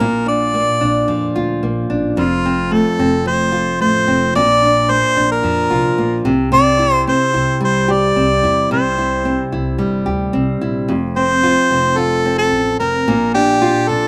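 Easy-going and carefree, this acoustic pop piece in F major moves at 110 BPM, with a warm, punchy harmonica carrying the smooth-topped solo melody up front over a bright, fingerpicked nylon-string guitar with fresh strings and a woody pizzicato upright bass sitting low in the mix, the whole recording captured dry outdoors before shifting into a new section at 10.9 seconds.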